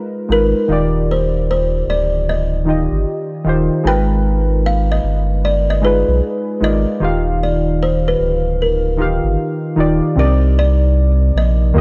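A buzzing, woody kalimba carries the melody over round, mellow analog keys from the very start, the keys softened by chorus, cassette-tape wear and a filter sweep. A deep, sine-toned sub bass with an octave enters up front at 0.3 seconds. This dreamy, cosy lo-fi hip hop excerpt moves at 76 BPM in Eb major with a swung sixteenth-note feel, drifting through Abm6, Ebmaj9 and Cm7 in a dark production with light reverb.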